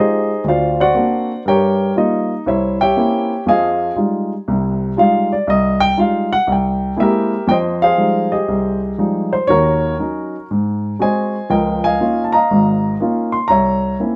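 Solo jazz piano in F minor, taken from a longer piece, with a smoky, moody atmosphere at 120 BPM in 4/4 and an eighth-note swing. A single upright piano carries the whole recording, its tone warm and woody and placed up front. Its range stretches from Ab1 up to C6. The first half, through 7.5 seconds, moves through D7alt, Gm7b5 and C7b9 before settling on Fm9 and turning on C7b13. From there the harmony shifts through Fm9, Ebm7, Ab7 and Db69, closing on C7b9 at 13.5 seconds. A light reverb and the sense of a live room surround the close piano.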